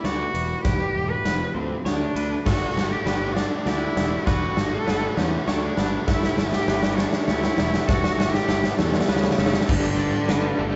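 A big, punchy rock drum kit with bright cymbals sits up front in this cinematic, hopeful post-rock excerpt in 3/4 at 100 BPM in G lydian, playing a fill through the build-up that runs to 9.7 seconds. A clear, focused bowed cello carries the melody over fuzzy overdriven bass, twangy clean guitar arpeggios with vibrato, and a distant French horn section holding sustained chords very quietly. A warm hollow-body guitar arpeggiates until 2.5 seconds, when a bright distorted guitar riff enters in the background, and at 9.7 seconds an overdriven semi-hollow guitar riff with tremolo arrives, the band sharing one large reverberant room with a rolled-off top end.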